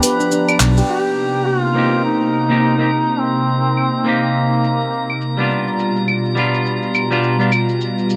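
Mystical and meditative, this organic downtempo excerpt at 104 BPM with a swung 4/4 feel sets a distant, vibrato-laden duduk melody over a smooth, detuned analog pad and a faint glassy harmonics texture, while ringing steel handpan arpeggios sound briefly at the opening, a growly fretless bass hits an accent at 0.6 seconds, a clean semi-hollow guitar with sampler grit and tape echo enters at 1.7 seconds, and a filtered deep house kit of claves, handclaps, hi-hat and shaker drives the groove under the G7 to Cm7 progression in a light digital ambience.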